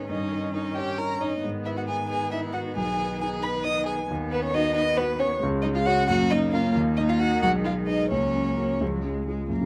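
A warm first violin carries the melody from 0.1 s, close and up front, its expressive vibrato and portamento giving this cheerful, lively classical-period movement for piano quintet its character. Cut from a longer piece, it moves at a quick 90 BPM in dotted quarters in a straight 6/8, starting in G# minor before shifting to F# major at 4.1 s, with the instruments tuned to A4 = 436 Hz. A second violin adds a rich, smooth and even line beneath it until 8.8 s, while the cello contributes a focused second line from the background. The viola and a grand piano supply the accompaniment; the piano sits up front with an intimate, natural tone and audible action noise. Light reverb and a dark, warm production round out the sound.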